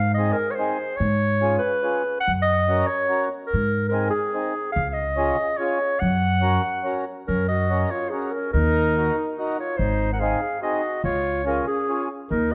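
Alpine folk with a festive, jolly lilt, this excerpt from an alpine dance band moves in a brisk 3/4 at 144 BPM in F# major. A warm, classical-style clarinet carries the melody up front over a woody pizzicato upright bass and a reedy, full accordion accompaniment. At 7.3 seconds a mellow trumpet with light vibrato joins as a second line, all set in a dark production with a moderate recital-hall reverb.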